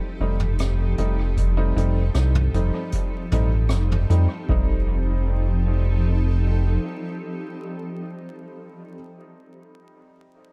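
Peaceful and spacious, this short ambient dub fragment drifts over a single F7 chord, with a blurred, evolving granular cloud pad holding sustained chords behind woody upright piano stabs with audible action noise and dub echo, while a round, dark analog bass sits up front, a brushed drum kit adds hi-hat, rim clicks and toms from 0.4 seconds, and a tape-warm electronic kick thuds in the background until 4.7 seconds, all under studio reverb and vinyl crackle.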